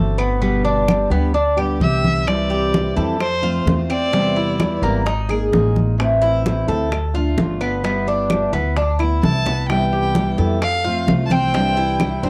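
Captured at home on cassette in a booth with moderate ambience, this relaxed Cuban son and guajira excerpt pairs a full-bodied fingerpicked steel-string acoustic guitar with a metallic, double-strung Cuban tres playing arpeggios up front over a dark, thumpy pizzicato upright bass, while woody claves, bright compressed congas and round, low-tuned bongos sit in the background, and a rich, focused bowed violin with vibrato and tape echo carries the melody from 1.8 to 4.8 seconds before returning at 9.2 seconds alongside a drum fill.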